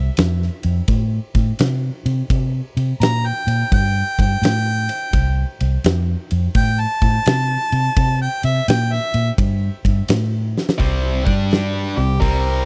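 An overdriven, bright harmonica with light vibrato and scooped notes takes a close-miked, jazz-style solo from 3.0 s in this gritty, driving excerpt of swung blues rock and southern rock at 85 BPM in C mixolydian, carried by a dark, round, foam-muted fingered bass and a big rock kit with a punchy kick and a fat snare in a bright stone room, until a drum fill ushers in a tight, double-tracked distorted guitar riff at 10.8 s, all within a dry, close 1970s-style studio sound.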